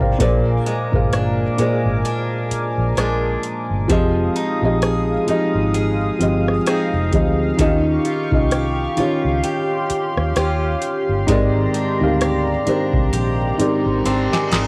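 Late-night and moody, this excerpt of contemporary R&B moves at a slow 65 BPM in 4/4 with a lazy 16th-note swing, drifting through Bb7, Fm7, Eb9 and Abmaj9#11. A felt-muted upright piano sits up front, soft and intimate with thick felt and audible action noise, while a picked steel-string acoustic guitar weaves boxy arpeggios marked by the odd finger squeak. Behind them a chorused pulse-width pad holds shimmering, retro chords with a slow attack, and a vintage muted fingered electric bass adds a round, foam-muted, dark low end. A booming analog drum machine supplies a deep kick, crisp snare, rim click and metallic hats, and the piano, pad, guitar and drums carry a cassette-tape color. Light reverb frames this home cassette recording, and a drum fill arrives at 13.1 seconds as a reverse cymbal rises in the background from 13.7 seconds to the close at 14.7 seconds.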